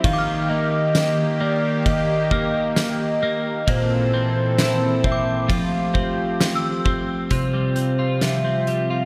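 Dream pop at a slow 66 BPM in a dreamy, floating mood, this short excerpt moves through Ebmaj7, Bbmaj9#11 and Fmaj9 before settling on Csus4 at 7.3 seconds, with a hollow, woody clarinet-like synth lead carrying the melody through chorus, delay and vibrato. Up front, a clean, compressed twelve-string electric guitar picks arpeggios with delay, while an oversized, low-tuned drum kit brings a punchy kick, fat snare, dark cymbals, hi-hat, ride and tambourine with a gritty, saturated edge. A smooth sawtooth analog pad sustains the chords beneath, and an inharmonic, warbling FM chime rings in the background, all set in a lush hall reverb with bright 1980s-style digital production.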